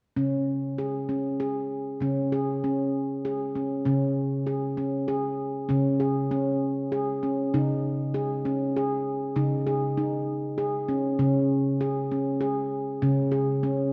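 Dreamy and calm, this short cut from a longer piece sits in a meditative world style, moving in an unhurried three-beat lilt. A lone handpan carries everything, playing arpeggios from 0.2 s through to 13.9 s, its nitrided steel ringing under soft fingertips. The tone is mellow and vintage, band-limited, and placed up front in the mix. A wet echo chamber lets each note hang and blur into the next, giving the space a long, misty tail. The harmony rests on a Db chord, shifts to Ab over Db at 7.5 s, then settles back on Db, keeping the mood suspended and still.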